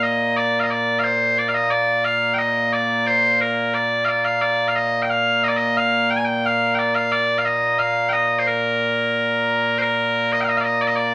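Loud, bright bagpipes carry this stirring, proud stretch of Scottish traditional pipe music alone, their piercing, continuous tone sitting up front in Bb major at 89 BPM in a straight 2/4. Cut from a longer piece, the opening strain runs to 9.8 seconds before a new passage begins and carries through to 11.1 seconds. A moderate studio reverb gives the pipes some room, and a layer of vinyl crackle lends the recording an aged texture.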